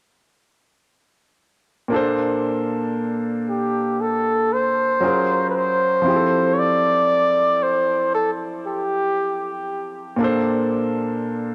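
This short, intimate home recording on cassette sits in a moderate spring reverb that gives the room a soft, lingering glow. It is a tender, romantic R&B piece at a slow 58 BPM in a straight 4/4, tuned to A4 = 443 Hz. A clear, polished grand piano carries the accompaniment from 1.9 seconds, up front and present, with its action noise audible beneath lush chords moving from Bbmaj9 through Gbmaj9 and Fmaj9 before settling back on Bbmaj9. At 3.5 seconds a warm flugelhorn enters as the jazz-style solo voice, its smooth top sweetened by light vibrato and scooped notes. The horn alone carries a cassette tape character and a tape echo, and it holds the melody until 9.7 seconds while the piano continues a little longer.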